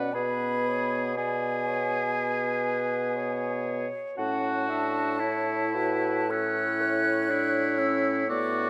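Moderate scoring-stage reverb surrounds this melancholic, solemn fragment of a slow romantic wind-quintet movement in 4/4 at 51-63 BPM with a rubato feel, where a hollow, airy silver concert flute with vibrato and a crisp attack sings the high melody above a bright, up-front oboe second line with light vibrato, a clear French horn and a distant, roomy clarinet in accompaniment, and a warm bassoon bass, all five sounding throughout as a C#5/B chord settles onto A major at 4.2 s.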